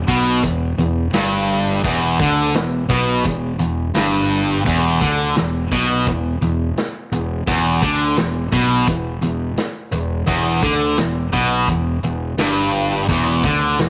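Blues rock in the power trio mold, shaded with southern rock, this heavy, smoky excerpt moves at 85 BPM in a straight 4/4, sitting on E minor throughout. A sludgy distorted guitar carries the riff from 0.1 s, bright and overdriven, picked and double-tracked, and placed up front as the loudest part. Underneath, a fingered electric bass with fuzz and overdrive enters at 0.0 s, its growly, punchy tone reaching down to E1. A vintage drum kit of kick, snare and hi-hat plays in a studio room, with a punchy kick, a medium-tuned snare, and a gritty, saturated sound with a rolled-off top. Light reverb gives the trio a little air as all three parts run to the cut at 13.9 s.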